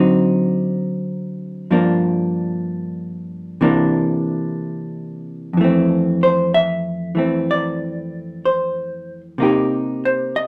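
Intimate and tender, this short jazz ballad excerpt in F major drifts at 63 BPM with a lilting swing as a lone vintage hollow-body electric guitar, dark, clean and picked, sits up front in a moderate studio reverb, moving through D7b9, Gm7 and C9 before settling onto Fmaj7 at 5.6 seconds and closing on Cm7.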